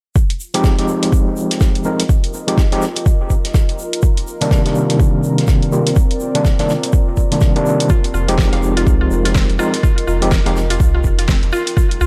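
Deep house at 124 BPM in F dorian with a 16th-note swing, this smooth, deep excerpt sets an up-front electronic kick against a layered, overdriven kit with a fat snare and a quiet unplugged kit of hi-hat, shaker and bundle-stick snare, while barky, gritty tine electric piano stabs with fast tremolo and tape echo move over Fm9 and Cm9 chords, a moody detuned ambient pad pumps in from 2.1 seconds, and a woody, bright mallet-like pluck arpeggio and a round analog bass arrive near 8 seconds, before a very faint riser appears at 11.9 seconds in a small room ambience.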